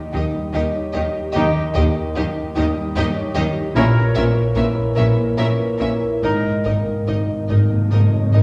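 Bittersweet and moving, this cinematic fragment in a rubato 3/4 carries a violin section's smooth, vibrato-laden melody over a soft, felt-muted upright piano with audible action noise, a dark, distant French horn section, a ringing fingerpicked concert harp, and lush bowed second violins, violas, a very quiet cello section and double basses. An airy small flute group, a very quiet clarinet and a cor anglais with light vibrato add second lines from 1.4 to 6.6 seconds, while close, dry timpani struck with medium mallets sound at the opening and return with a fill from 6.2 seconds. A wet recital hall reverb sets the music further back in the room as the harmony moves from D# through A#dim to G#sus2.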